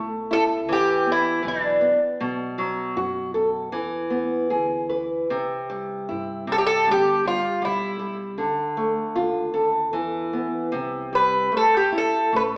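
Cut from a longer piece, this passionate, mournful fado-style ballad opens with a small, fingerpicked nylon-string guitar up front over a woody, thumpy pizzicato upright bass on gut strings in the background, moving freely around 77 BPM in 2/4 and tuned to A4 = 443 Hz, as a bright, metallic Irish bouzouki with picked double strings carries the melody up front in short phrases at 0.3, 6.5 and 11.2 seconds, all played live in one room with a wet stone-room reverb and the sound of an AM radio.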